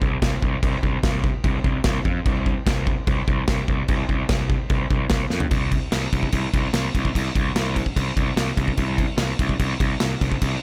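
A growly, fuzz-drenched picked electric bass sits up front with bright, overdriven bite, holding to a low register from C2 to F2 while a big acoustic rock kit pounds beside it with a punchy kick, medium-tuned snare, toms, and splashes of crash and china cymbal. This heavy metal passage, cut from a longer piece, drives at 147 BPM in a straight 4/4 with an aggressive, relentless mood, and a drum fill at 5.3 seconds carries it into a new section. The dry, close sound leaves both parts raw and in your face.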